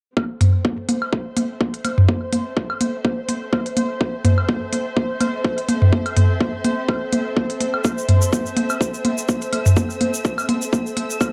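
Minimal techno at 125 BPM in A minor, with a sparse, cool mood and a 16th-note swing, heard as a short cut from a longer piece that stays on an A minor chord throughout. A punchy, layered electronic kick sits up front with a tape-warmed, small-room character, joined by clicky electronic hi-hats that carry the sound of a large room. Overdriven analog-style congas, woodblock and toms also sit forward in the mix, giving the groove a gritty edge. Beneath them, a bowed string section with vibrato and a smooth, sul tasto softness fades in from 0.2 seconds and pumps against the kick, alongside a pulsing, tempo-synced triangle texture around C5 that is detuned, chorused and bathed in its own reverb. A grainy, close and dry egg shaker enters at 7.8 seconds, adding bright detail near the end, and the whole recording has the light reverb and character of a home cassette recording.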